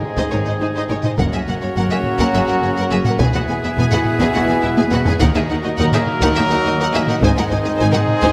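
Dramatic and relentless, this 7/8 excerpt from an epic orchestral film score drives forward on hard-stick taiko drums and clear trumpet stabs, with a focused, lush violin melody over a smooth second violin line, very quiet violas, expressive cellos and woody double basses, while French horns, distant trombones and roomy woodwinds hold sustained chords in the background, a drum fill arrives at 4.8 seconds, and a barely audible, round timpani sounds from 5.2 seconds, all within a moderate scoring-stage reverb.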